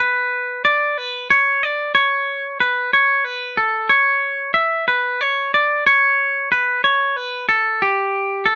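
A twangy electric guitar carries this short rock fragment, playing clean, picked lines from 0.0 to 8.6 seconds. Its tone is bright and compressed, sitting up front in the mix, and its melody stays in a compact span between G4 and E5. The music moves in a lilting 6/8 metre with a straight feel, and the mood is bright yet wistful. Light reverb gives the sound a sense of one shared room, as if captured live, while the top end is gently rolled off. The passage is cut from a longer piece, leaving a brief glimpse of the guitar's melody.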